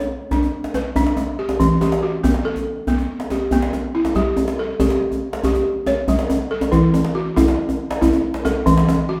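Balafon and djembe start together in this joyful, hypnotic West African piece, cut from a longer performance and moving in a straight 12/8 at 94 BPM in dotted quarters. The woody, buzzing balafon, struck with rubber mallets, plays arpeggios over G and Em before shifting to A7/G at 4.2 seconds and Esus24 at 6.7 seconds. Up front beside it, the deep, soft-handed djembe with metal rattles carries the percussion until 9.0 seconds, with the band playing live in one large studio room.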